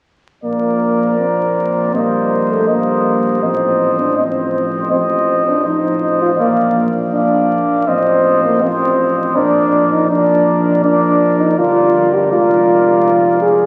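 Triumphant and warm, this classical brass quintet passage moves at a stately 81 BPM in 4/4, settled in Bb major and cut from a longer piece. All five players begin together at 0.4 s. A mellow cornet carries the melody up front, while a trumpet with light vibrato and a soft attack sings a second line beneath it. The French horn, also up front yet distant and roomy, fills out the accompaniment alongside a dark, close-miked euphonium sitting in the background, and a tuba with its own gentle vibrato anchors the bass. The harmony passes through Cm7/Bb and F7/A before landing on Bb7/F near 12.3 s, with horn and tuba playing on to 13.7 s. Everything sits in a cavernous cathedral reverb and carries the crackle of a very old 78 rpm record, giving the sound an aged, hazy glow.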